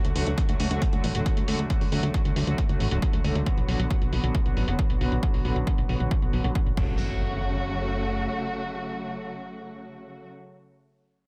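Muted chamber strings, veiled and con sordino with vibrato and a vintage sampler grit, hold sustained chords alongside a plucky, wave-folded analog bass with tube saturation, both pumping and filter-swept, while a metallic-hatted techno kit with crash and a punchy up-front electronic kick from 0.4 s drive this euphoric uplifting trance excerpt at 136 BPM in F# minor through D, Bm and F#m, until the drums stop at 6.9 s and a background electronic impact lands as the strings carry on to 10.3 s.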